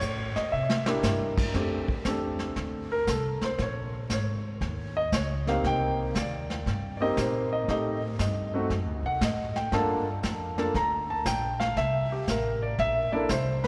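A jazz piano trio swings along at 117 BPM in F major, relaxed and playful, and this short passage is cut from a longer piece. The grand piano carries the melody up front with a warm tone, ranging between A3 and Bb5 and taking a solo from 1.5 seconds through to the end at 13.7 seconds over changes such as F69, Bbm7, Cm9 and a closing C13. The upright bass is plucked, woody and growly, with a thumpy low end reaching down to Ab1. The vintage brush kit sounds dark and smooth, with a punchy kick, a medium-tuned snare, dusky cymbals and a rolled-off top, and it adds a brief fill between 0.5 and 1.0 seconds. A lush cathedral reverb with a long five-second tail places the trio in a church or concert hall.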